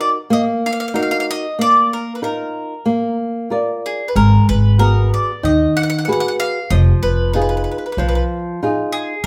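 A bright bowl-back mandolin, picked on its doubled strings, opens this passionate, wistful Italian serenade in folk style, joined from the first moment by a fingerpicked flamenco guitar with a warm, acoustic tone. Both sit up front, the mandolin carrying the melody while the guitar supplies accompaniment in a straight 4/4 at 94 BPM, tuned slightly low to A4 = 437 Hz. The harmony moves through Ebm, Bbsus4 and Bb before settling onto Abm7 and Fm7b5, giving the short excerpt a yearning, minor-key colour. At 4.2 seconds a pizzicato upright bass enters beneath them, its woody, dark, thumpy steel-string sound adding weight in the low register. The trio sounds like a band playing live together in one large studio, bathed in a wet reverb, and the clip is cut from a longer piece, ending at 9.3 seconds.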